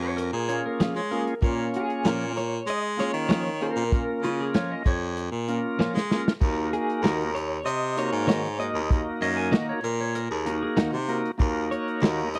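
A straight-eighth 4/4 groove at 96 BPM drives this soulful, mournful soul blues fragment in Bb minor, cut from a longer piece. An acoustic soul drum kit sits up front with a tight kick, a medium-tuned snare, dark cymbals and hi-hat. It plays a fill from 5.8 seconds that leads the harmony from Bb minor to Eb minor at 6.4 seconds. An edgy, punchy baritone saxophone carries the bass line with forceful vibrato, also up front. Above it, a slightly broken-up electric guitar through a small old amp picks the dusky melody with tremolo, while a clean, twangy lap steel adds a compressed slide second line that drops out and returns at 9.2 seconds. A reedy, lightly overdriven tonewheel organ with key click and a slow rotary speaker fills the accompaniment, and a direct-recorded clean electric guitar supplies bright, picked stabs, all captured in a dry, close 1970s-style studio with small room ambience.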